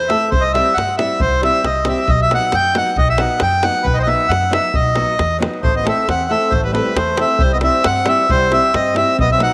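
A straight 2/4 pulse at 135 BPM drives this fiery, restless Balkan wedding-band passage, cut from a longer piece, as a reedy, up-front accordion carries the melody over tight, dry davul, woody pizzicato upright bass and boxy fingerpicked flamenco guitar with audible finger squeak, until a mellow trumpet with light vibrato slips in behind as a second line at 5.6 s, the band sitting in a moderate plate reverb over chords moving through C, B, Am and back to C.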